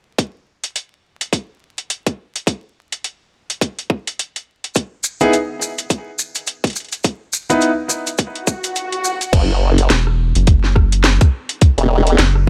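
Glitch hop with a funky, gritty swing, this excerpt opens on a tight, up-front electronic kick and a layered kit of cracking snare and metallic hats over vinyl crackle, adds grainy maracas and clear, intimate concert grand piano stabs with pumping delay midway, then, after an electronic swell, drops at 9.3 seconds into a chorused formant-sweep wobble bass joined by a rubbery, hollow square bass.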